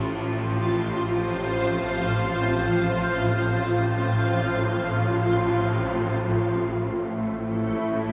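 This dark ambient drone piece, cut from a longer work, feels desolate and ominous, with its tuning set to A4 = 441 Hz. A granular cloud pad holds sustained chords from A3 to F5 for the full 8.1 seconds, its detuned sine unison sounding cloudy, blurred and full-bodied, with slow attacks, long releases, built-in reverb and a subtle chorus. Beneath it, a swarming drone spans A1 to A2, its detuned, granular sine unison bright and tense, also shaped by slow attacks, long releases and its own built-in reverb. Both layers sit up front and keep evolving, while the harmony moves from F5 to A5 at 5.8 seconds. A wet plate reverb with a 2.8-second decay and a small-room ambience leave the whole mix soaked and dreamy.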